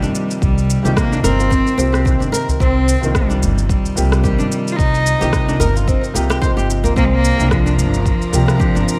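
This organic downtempo excerpt opens in C minor at 110 BPM in 4/4, with a gentle 16th-note swing and a meditative mood. A clear, biting cello with light vibrato carries the melody up front, its earthy bowed tone trailed by tape echo and slapback. Beneath it sit a soft, felt-muted upright piano, mellow and vintage in character, treated with delay, slapback echo and sidechain pumping, and an acoustic flamenco guitar fingerpicking arpeggios through delay and slapback. A woody, dark pizzicato upright bass with thumpy gut strings pumps under the sidechain, while a layered electronic shaker and rim click add a quiet, tape-colored pulse with slapback echo. A deep electronic kick drum joins at 0.4 seconds, and a very quiet udu adds low acoustic percussion from 1.2 seconds. At 7.0 seconds, as the harmony moves from Cm to Bb, a warm chamber string section enters with reedy, period-style sustained chords that also pump under the sidechain, all within a light, small-room reverb.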